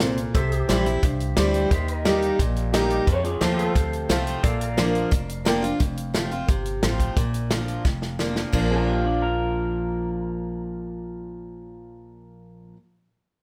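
A brisk, straight 4/4 honky-tonk and classic country groove at 176 BPM in Bb major carries a heartfelt, nostalgic mood, with an up-front, bright, full-bodied picked acoustic guitar and a punchy natural drum kit driving alongside a thumpy gut-string upright bass, while a twangy pedal steel with volume swells holds sustained chords until 5.8 seconds, a clear, vintage upright piano sits in the background with a fill at 2.6 seconds, a slightly broken-up electric guitar with tape echo adds a second line that returns at 8.7 seconds after a drum fill, and light reverb rounds out this cut from a longer piece.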